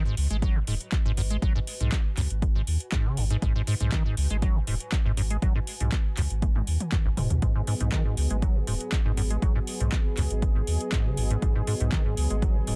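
A straight 4/4 pulse drives this gritty acid house excerpt, anchored by a dry, punchy electronic kick that sits up front with overdrive on it. An overdriven analog drum machine adds handclaps, metallic hi-hats and toms, and breaks into a drum fill at 6.4 seconds. The squelchy, hollow square-wave acid bass riff is resonant and up front, its filter sweeping across a fast, decaying attack, with analog chorus and tape echo, while a deep, round sine sub bass sustains underneath with sidechain pumping. Far in the background, a cloudy granular pad of blurred triangle tones fades in and evolves, breathing with its own reverb and sidechain pumping. At 7.4 seconds a detuned sawtooth analog pad enters with smooth, bright sustained chords over a single G#m7 harmony, carrying chorus, 12-bit sampler grit and pumping of its own. The mix is dry and dense, with a heavily limited modern master.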